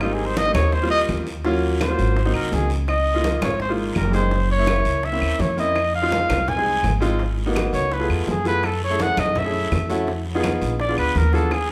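A straight 4/4 groove at 167 BPM carries this lively, danceable Afro-Cuban jazz excerpt in Db major, tuned to A4 = 436 Hz: ringing, low-tuned congas struck with hard hands and woody claves sit in the background, round, very quiet bongos and a raspy, close guiro add detail, a pizzicato upright bass with steel strings stands up front, a clear baby grand piano accompanies until 11.5 s, and a breathy trumpet with light vibrato and a smooth top solos throughout, the band playing live in one room with moderate large studio reverb.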